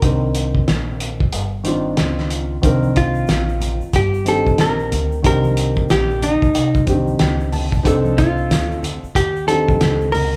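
Smoky and mellow, this jazz-hop cut moves at 92 BPM in 4/4 with a lazy swing on the sixteenths, sitting in C dorian over a Cm9 chord and tuned slightly below standard pitch. A vintage hollow-body jazz guitar carries the melody up front, its clean, picked tone dark and compressed, while a dark upright piano fills in the harmony with a smooth, woody, vintage character and steps forward with a short fill at 6.9 seconds. Pizzicato upright bass on steel strings anchors the low end with a warm, woody sound. The cloth-damped drum kit is thuddy and lo-fi, with a fat snare, tight kick and hi-hat, its gritty, saturated sound and muffled, rolled-off top placed close in the mix, and a brief break arrives at 1.3 seconds. Egg shaker and congas join at 2.6 seconds, ringing yet close and dry, tucked into the background. The band plays together live in one large studio with a moderate reverb, and the passage is cut from a longer piece.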